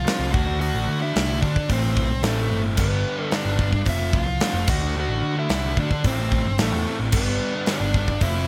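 Dark and angsty, this short cut from a longer quiet-loud alternative rock piece moves at 110 BPM in a straight 4/4, tuned slightly sharp to A4 = 445 Hz. A smooth, overdriven lead guitar carries the melody across a range of A3 to F#5, its picked lines trailed by a slapback echo. Underneath, two picked riff guitars sit in the background: one crunchy and bright, the other thick with fuzz distortion. A punchy, amped electric bass with overdrive growls from F1 to D3, while a big acoustic rock kit sits up front with a punchy kick, medium-tuned snare, hi-hat and bright crash cymbals, entering at 0.1 seconds and stopping at 8.3 seconds. The chords cycle through D, Am, G and F under light reverb, giving the whole stretch a brooding, heavy drive.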